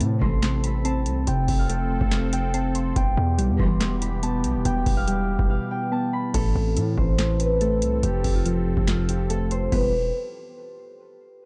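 Hard-hitting and eerie, this half-time trap excerpt pairs a mellow, thumb-plucked concert harp melody with a delay against round, warbling electric-piano-like synth keys, a resonant detuned pad, punchy sine 808 bass with a noise layer, a booming analog drum machine with deep kick, tonal snare, handclaps, metallic hats and crash, and very quiet bowed symphonic string stabs at 0.2 and 3.6 seconds, all in a dark, dry production with a break from 5.5 to 6.3 seconds.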